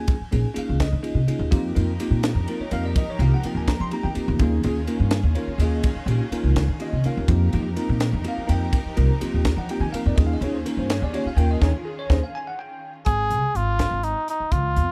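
A dry, close-sounding mix opens this slick, intense excerpt of electric jazz fusion, moving at 83 BPM in a straight 6/8. A bell-like tine electric piano with lush chorus carries the harmony up front, joined by a woody, dark upright bass played pizzicato and a crisp acoustic drum kit with bright cymbals, a high-tuned snare and a punchy kick in a small, pumping room. From 1.5 seconds a distant symphonic string section holds smooth, bowed chords behind them as the harmony alternates between Eb9sus4 and F9sus4. The band hits an accent topped by a drum fill just before 13.1 seconds, when a cup-muted trumpet steps forward with a veiled, forceful jazz solo line and light vibrato over an Ab5 chord.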